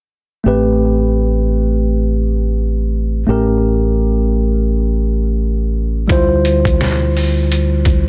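Mellow and smoky, this jazz-hop excerpt at 85 BPM in A minor swings gently as a worn, slightly out-of-tune tine electric piano lays down Am9, A7b9 and Dm11 chords over a round, punchy, dark fingered electric bass, until a muffled, overdriven, pitched-down sampler-style drum kit with a thumpy kick, medium-tuned snare and hi-hat arrives at 6.1 seconds, all in a dry, up-front sound.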